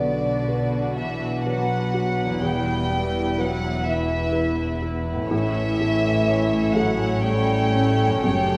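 A scoring-stage reverb wraps this short cinematic cut from a longer piece in a soft, spacious bloom, its mood longing and moving at a rubato 62 BPM in 3/4, moving from Bm to Em to A. Up front, a violin section carries the melody with light vibrato and a sul tasto hush, while a second violin line floats with a pure, smooth top above a dark viola section, a lush cello section and a rich bowed double bass section holding the low end. In the background, a felt-muted upright piano adds mellow, intimate accompaniment and a French horn section sustains tight chords. A very quiet concert harp rings out fingerpicked arpeggios.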